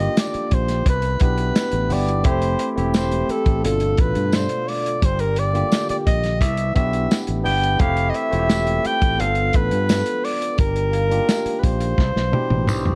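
A breathy, intimate alto saxophone carries the melody up front in this lush 1970s-style soul excerpt, over a barky, lightly overdriven tine electric piano and a dark, distant French horn section holding sustained chords. A growly, punchy fingered electric bass and a muffled, lo-fi soul drum kit anchor the groove, with a jingly tambourine in the background and a drum fill at 12.0 seconds. A mellow vibraphone with soft mallets and fast motor vibrato adds ringing texture from 2.3 seconds and again from 10.9 seconds, all within light small-room reverb and a dark, warm production.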